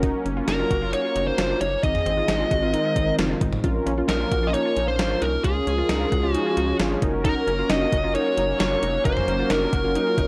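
A dry, gritty recording with little reverb frames this upbeat, nostalgic synth-pop excerpt in 4/4 at 133 BPM, cut from a longer piece and moving through Gb, Ab, Bbm and Db chords. A gated 80s digital drum machine with a thumpy kick and gated-reverb snare plays alongside a rubbery, hollow square bass, while mellow synth brass adds accompaniment and a swirling phased analog pad and a lush unison pluck playing arpeggios through analog delay fill the background. From 0.5 seconds a fuzz lead guitar, distorted and compressed, carries the melody up front with its own analog delay.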